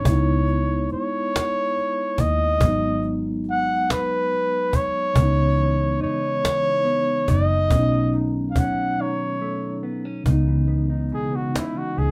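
A warm flugelhorn with light vibrato and scooped notes leads this slow, sultry late-night R&B groove in six-eight, carrying the melody up front over a mellow, clean tine electric piano, a dark, round, foam-muted fingered bass and a snappy cajon played with soft hands. A dark, clean fingered electric guitar adds a second line, drops out at 0.6 seconds and returns at 5.2 seconds, while the chords move through minor ninths, a minor seventh and a dominant ninth. After a brief break, the flugelhorn takes a jazz-style solo from 10.3 seconds in this excerpt, the whole band sounding as if playing live together in one room with a moderate studio reverb.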